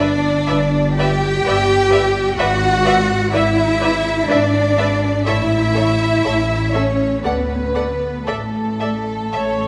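A concert-hall reverb surrounds this serene, slow romantic classical excerpt for string orchestra in rubato 3/4 at 56-66 BPM, where a clear, focused violin section carries a distant melody until about 9.4 seconds over a close, intimate second violin line, smooth background violas, an expressive up-front cello section with portamento and a rich, even double bass section, which all play until about 9.7 seconds.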